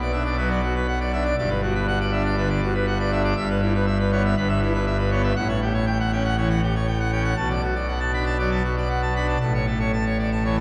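A full pipe organ plays alone and up front in this 10.6-second fragment of a classical organ toccata, its mixtures giving a brilliant, romantic voicing that spans G1 to B5 in a majestic, jubilant mood. The piece moves at 120 BPM in a straight 4/4, tuned to A4 = 443 Hz, with harmony passing from Bm through Gmaj7, Em/G, A6 and Bm7 before landing on A. A wet church reverb with a 3.3-second decay surrounds the instrument, and the production has a dark cast.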